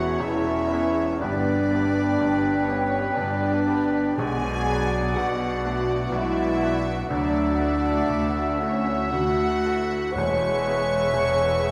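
Moving at a rubato 61 BPM in 3/4, this tender, emotional cinematic score excerpt drifts over chords of E6, G, Bm and Dadd9, with a floating, sul tasto violin section carrying the melody while a second violin line, a clear solo oboe, a very quiet mellow clarinet and an airy large flute ensemble weave supporting lines. Mellow French horns hold the most prominent sustained chords, over a dark, woody viola section and a felt-muted upright piano whose soft action noise lends intimacy, with cellos and double basses anchoring the bass. Very quiet timpani on medium mallets touch in at 4.2 and 10.2 seconds, and a recital-hall reverb wraps the ensemble in a lush, moving glow.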